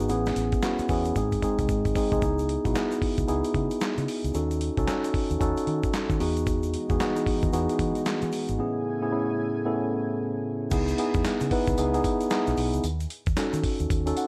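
A mellow tine electric piano sits up front over a dusty, gritty sampler-style drum kit with a thumpy kick, handclaps, tambourine and gated reverb, joined by a round, foam-muted fingered electric bass and a very quiet, grainy egg shaker in this punchy, bouncy new jack swing excerpt at 113 BPM in C# minor, swung on the sixteenths. A drum fill at 1.2 seconds leads into a progression moving through C#m7, D#m7b5 and Emaj7, where a lush, warbling unison pad with chorus enters at 6.5 seconds and sustains until 10.7 seconds. The excerpt ends with a brief electric piano fill at 13.9 seconds, all set in light digital ambience.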